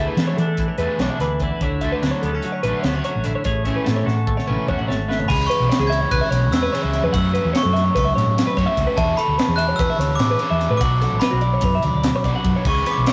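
A bell-like glockenspiel struck with hard plastic mallets carries the melody once it enters at 5.3 seconds, its metallic ring set in a boxy small room over this intricate, bright passage of math rock and midwest emo, cut from a longer piece. The music moves in 9/8 at 294 beats per minute counted in eighths, with a straight feel and tuning of A4 = 439 Hz. Two clean, twangy twelve-string electric guitars open the passage: one plays phaser-tinged accompaniment until 5.3 seconds, while the other sits up front with compressed, picked arpeggios throughout. A crunchy, double-tracked overdriven guitar adds a riff beneath them, and a dark, round hollow-body short-scale bass, played with the fingers and amped, anchors the low end. A crisp, airy fusion kit with a high-tuned snare and punchy kick brings crash, ride, hi-hat and toms, and plays a fill just before the glockenspiel arrives. The harmony moves through E7sus4, Dmaj9, Amaj13, C#m7 and F#m7, returns to E7sus4 and settles on Bm7, and the whole passage sits in a wet, rough rehearsal-room sound with warm saturation.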